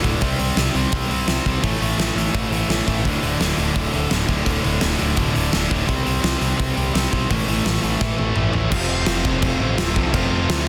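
A straight, driving 4/4 pulse powers this short, upbeat and rowdy punk rock cut from a longer piece, with a big acoustic drum kit up front: bright cymbals ringing off a stone room, a fat snare, and a tight kick with soft clipping, plus hi-hat, crash and toms. Two picked electric guitars play the riff from the start: a tight, distorted one sits forward, while a crunchy, overdriven guitar with a mellower tone stays in the background. Beneath them a growling picked bass, overdriven and blending direct and amped sound, holds the low end. The riff cycles through C5, A5 and D5 power chords, and a drum fill from 8.0 seconds leads into a new section. At 8.7 seconds the crunchy guitar drops out, the harmony moves to F, and a double-tracked fuzz guitar joins in the background. The mix is dry, dense and heavily limited, with a modern master.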